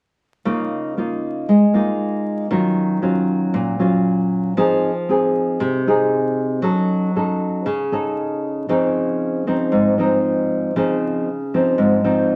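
A straight 4/4 pulse at 116 BPM carries this relaxed, breezy bossa nova clip in Db major, cut from a longer piece and tuned to A4 = 439 Hz. A solo nylon-string guitar plays from 0.5 to 12.4 seconds, thumb-plucked in a classical manner and sitting up front, with an acoustic, warm tone that ranges from Ab2 to A4. The harmony drifts through Db69, Ebm9, Fm7 and Gbm6 before the second passage opens at 8.7 seconds on a lush Dbmaj9. A wet studio reverb with a one-second tail surrounds the sound, and a vinyl crackle adds a dusty, nostalgic grain to the recording.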